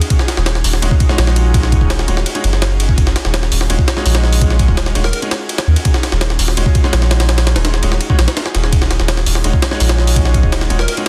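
An airy, breathy pad and a sampler-style jungle drum kit open this nostalgic, atmospheric drum and bass fragment at once, running at 167 BPM in 4/4 with a straight feel in Eb minor, resting on a single Ebm11 chord. The pitched-up kit sits up front with a thumpy kick, a high-tuned snare, hi-hat and ride cymbal, sounding compressed, gritty and tape-warm. A deep, round dub sub bass enters at 0.4 s, soft and sustained, and sits just as far forward as the drums. At 0.8 s a brilliant concert grand piano adds stabs with an open tone and long sustain, coloured by 12-bit sampler grit and dub echo. The detuned pad holds sustained chords in the background with chorus and the same vintage grit, while a punchy, catchy unison lead flickers briefly on a single Bb4 at 5.0 s and again near the end, trailing dub echo. The digital ambience and dense, heavily limited modern master give the whole cut a full, loud finish.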